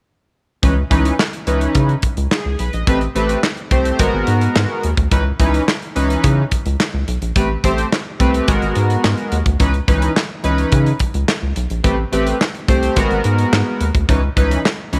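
A glossy, chorused polysynth sits up front in this early-eighties boogie funk excerpt, its retro pulse-wave and sawtooth tones shimmering with pulse-width modulation and a sub octave beneath the chords. Set at 107 BPM in 4/4 with a straight feel in C# minor, the groove is slick and danceable from the first beat at 0.6 seconds through to 15.0 seconds. A rubbery square bass bounces underneath, its hollow, dark tone shaped by a quick filter pluck and sustained notes reaching down to G#1. A modern studio drum kit with a tight kick, medium-tuned snare, hi-hat and handclaps sounds up front in a small acoustic room. The harmony cycles through C#m9, Am9 and G#m9 before returning to C#m9, and light reverb lends the mix a touch of space.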